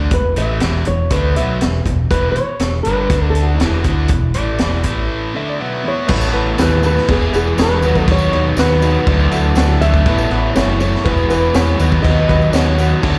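Heard through a club's PA with a live-room reverb, this driving, sunny classic rock cut in E major moves at 121 BPM in a straight 4/4. Up front, a punchy vintage drum kit with a high-tuned snare and dark cymbals sits beside a growling, overdriven fingered bass, while a bright cranked stack guitar and a crunchy overdriven guitar pick their riffs in the background under a thumb-plucked flamenco guitar melody with fresh strings and audible finger squeak. A twangy slide lap steel adds a brief second line at 4.3 s, and after a short break the section at 6.1 s brings in a brilliant, worn grand piano, a very quiet double-tracked semi-hollow guitar riff, a jingly tambourine and a barely audible tonewheel organ with fast rotary chorus.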